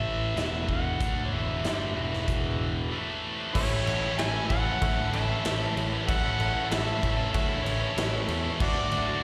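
A mellow, vintage harmonica with scooped notes carries the melody over a swaggering, sunny classic rock groove at 95 BPM. It is backed by a biting overdriven guitar in the background, a tight distorted guitar riff, an up-front, round fuzz bass, and a big, natural rock drum kit that joins at 0.4 s with a punchy kick, medium-tuned snare, hi-hat, ride and crash. A barely audible, shouting tonewheel organ with slow rotary slips in at 3.2 s. After a short break the chords settle on A, and from 3.5 s a dark octave-fuzz lead guitar adds a second line with plate reverb, slapback echo and digital delay, while a barky, reedy electric piano with medium tremolo joins the organ in filling in the harmony, all heard as a live gig through the venue's PA in a reverberant hall.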